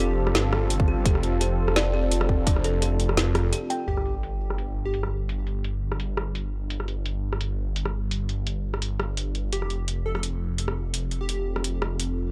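This dark, spacious half-time drum and bass excerpt at 170 BPM opens on a hollow, woody kalimba arpeggio with 12-bit grit and tape echo over a moody, chorused analog pad with sidechain pumping and a thick, swirling phased saw bass, while an electronic kit with a woody snare and metallic, low-passed hats gains a tight kick from 0.8 to 2.5 seconds, the kalimba gives way at 3.9 seconds to a background sub drop and a filter sweep on the drums, and a mellow, catchy unison lead with vibrato and tape echo surfaces in short phrases, last returning at 9.5 seconds, all in a dry, gritty hardware sound.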